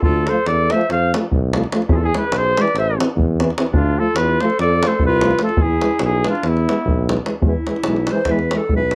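The clear, vintage-toned flugelhorn stands out up front, carrying the melody in this restless, virtuosic Balkan brass band excerpt, set in 9/8 at 292 BPM in eighths with a straight feel in E phrygian dominant, tuned to A4 = 436 Hz. Beneath it a smooth-topped clarinet plays a second line, while a soft-attacked tuba with light vibrato anchors the bass up front and a tight davul drives the percussion from a live-sounding room. Two euphoniums enter at 0.3 seconds with accompaniment, one dark with light vibrato, the other warm, distant and roomy with vibrato. The harmony moves through Dm, F, E and Am, and when the flugelhorn drops out after 7.1 seconds, the clarinet takes a solo from 7.4 seconds as the music shifts into a new section. The whole piece has a dry, close 1970s-style studio sound with little reverb, played in a classical manner.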